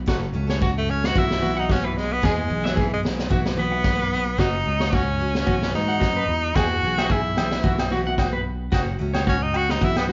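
Highlife guitar band in a carefree, danceable swing, with an edgy, forceful tenor saxophone soloing up front with vibrato and scooped notes from 0.8 seconds over fingered electric bass, a slightly broken-up twangy electric guitar playing arpeggios, a bright jumbo acoustic guitar picked in the background and a vintage kit with a high-tuned snare and punchy kick, as ringing agogo bells join at 6.6 seconds, all heard as a live band in one room with moderate large studio reverb and a dark, rolled-off top end.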